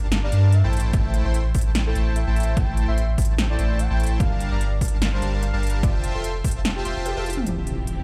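Over a half-time 147 BPM groove with swung 16ths in G dorian, this dreamy, emotional future bass drop pairs a smooth, detuned soft supersaw riff and a deep, saturated sub bass, both pumping under sidechain, with overdriven big-room drums of crisp hats, punchy snare and toms plus a punchy electronic kick, while a velvety synth lead with chorus and dub echo sits mellow in the background, a drum fill at 7.1 seconds leads to an electronic impact at 7.5 seconds, as a worn, slightly out-of-tune tine electric piano slips in just before at 7.4 seconds and a rich, bowed string section enters on a Dm11 chord, all washed in large studio reverb.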